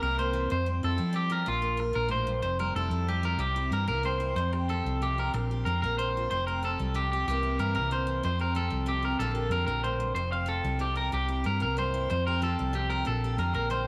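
Warm and danceable, this highlife excerpt moves at 124 BPM in a straight 12/8, with a bright, fresh-stringed picked steel-string acoustic guitar playing accompaniment beneath an up-front, twangy electric guitar at the edge of break-up spinning arpeggios through slapback echo, while a dark, round hollow-body short-scale bass anchors a cycle of C7, Fsus2 and Bb chords, all set in a moderate echo chamber reverb with small room ambience.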